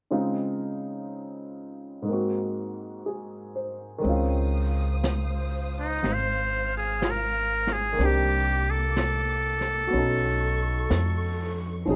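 Jazz ballad excerpt at a slow 61 BPM in swung 4/4, intimate and late-night, where an up-front baby grand piano opens alone on Dbmaj9 and Ab7 before woody, thumpy pizzicato upright bass, a brushed drum kit with a high-tuned snare, and lush bowed strings enter at 4.0 seconds, followed at 5.8 seconds by a buzzy, thin trumpet with metal mute carrying the melody with light vibrato over Dbmaj9, Cm9 and Cb9 changes in light reverb.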